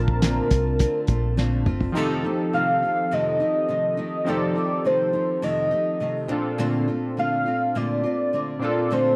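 Indie and bedroom pop at 104 BPM in a straight 4/4, this dreamy, nostalgic clip from a longer piece sets a velvety, detuned synth lead carrying the melody with vibrato and slapback echo over fingerpicked nylon-string guitar with a warbly pitch drift and airy, cassette-tinged analog keys, moving from Bbmaj9 to F7 and back at 6.3 seconds. A dark, foam-muted picked bass and a cloth-damped, thuddy drum kit with a fat snare play only at the start, the drums closing with a fill before dropping out at 1.9 seconds. The sound is dry and close, like a 1970s studio recording.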